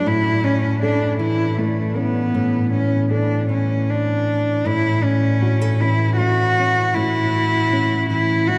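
Intimate and tender, this short piece cut from a longer acoustic folk-pop ballad in A major moves at a slow 52 BPM in a straight 6/8, tuned to A4 = 438 Hz. A single bowed cello carries the melody up front, played sul tasto with a soft attack and light vibrato, while a dark, thumb-plucked classical nylon-string guitar accompanies alongside it, also up front. Both parts play throughout, with the opening section returning at 4.7 s, all set in a church or concert hall whose wet cathedral reverb lingers for 6.7 seconds.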